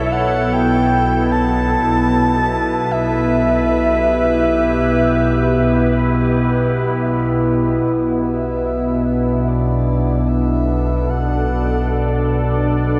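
In free time, this serene, reflective ambient passage in B minor, cut from a longer piece, rests on an evolving, morphing wavetable pad that sits up front with chorus and its own reverb. Beneath it, a bowed chamber double bass section holds a clear, earthy B1, while a felt-muted upright piano plays barely audible, boxy arpeggios until 7.8 s. Above them, a breathy, flute-like synth lead with vibrato, chorus and delay carries the melody from the start. At 7.8 s the harmony moves from A/B to Bm7 and the soft lead fades in, its melody ending at 12.3 s within a dreamy mix soaked in lush hall reverb.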